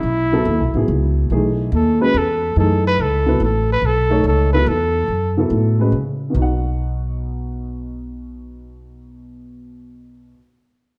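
A searching, hypnotic modal jazz piece in a swung 3/4 at 143 BPM opens with a breathy trumpet, a dark upright piano and a woody pizzicato upright bass, each placed up front over a B13sus4 chord in B mixolydian. The trumpet takes a punchy, vibrato-laden solo from 1.3 seconds and stops at 5.4 seconds, leaving the mellow, boxy, slightly detuned piano and the steel-strung bass to move to a plain B chord at 6.3 seconds. A large studio reverb and a warm production give the music a roomy glow.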